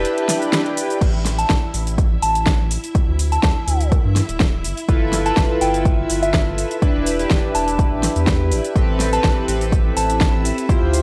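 This deep house excerpt opens on a short, deep break where a soft, pure FM bell melody floats over a moody, detuned ambient pad, shimmering string-machine violins, glossy chorused polysynth stabs, a round analog bass and an overdriven drum kit with a fat snare, metallic hats, shaker and crash. At 1.0 seconds the pad and stabs drop away as a deep, overdriven electronic kick enters, sitting up front with the weight of a large room. The bell keeps its gentle line, tinted by chorus, phaser, delay and a vintage 12-bit sampler grit, while the bright strings linger in the background with ensemble chorus and sidechain pumping. The tube-saturated bass holds the low end, and at 4.9 seconds the retro, full-bodied polysynth stabs return with delay and pumping. The harmony drifts through Em7, Dsus2, G13 and Am9 under light reverb, keeping a warm, deep mood throughout.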